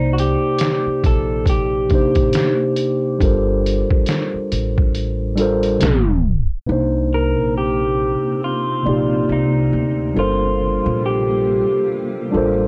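Lo-fi hip hop at 69 BPM with a swung sixteenth feel, this melancholic, hazy fragment is cut from a longer piece and moves through Cm7 and Gm11 with a brief turn to C#m7. A dark, slightly broken-up electric guitar carries the melody from Eb4 to Bb4, fingered and compressed through a small old amp, with spring reverb and tape echo softening its edges. Beside it, a mellow tine electric piano plays the accompaniment, sounding clean through its built-in speakers, while a woody pizzicato upright bass on gut strings holds down the low end. A gritty, pitched-down sampler-style drum kit with a thumpy kick and medium-tuned snare sits up front until 6.5 s, its kick muted from 4.9 s, and from 5.8 s a tape stop drags the music down before the second section. From 7.5 s a faint granular cloud pad drifts in with blurred, detuned sustained chords and a moving notch, and the whole fragment carries the soft grain of cassette tape in a small room.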